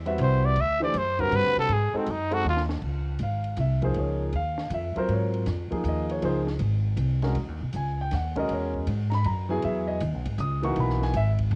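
A swinging 3/4 pulse at 159 BPM drives this searching, open modal jazz excerpt in Db major, where a raspy, growling trumpet takes a brief solo up front until 2.6 seconds over a woody, thumpy pizzicato upright bass, a dark, mellow concert grand with audible action noise, and a compact cocktail kit with a high-tuned snare whose fill at 2.4 seconds leads into chords moving from Dbmaj9 to Emaj9, all set in a small room with a cassette-tape hue on the piano, drums and trumpet.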